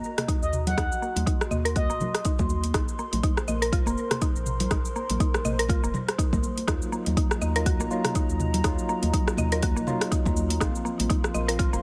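A swung 122 BPM afro house groove in Eb dorian rides on an up-front deep electronic kick, metallic hats, rim clicks, shaker and toms from the drum kit, and vintage congas set back in the mix, while a round, saturated analog bass and a moody, detuned pad pump beneath woody mallet-like synth pluck arpeggios under a filter sweep, a smooth, vibrato-laden synth lead sings briefly between 0.4 and 2.2 seconds, and a clean tine electric piano adds delayed stabs from 6.7 seconds over Ebm, Bbsus2 and Ebmadd9 chords in this driving, warm excerpt.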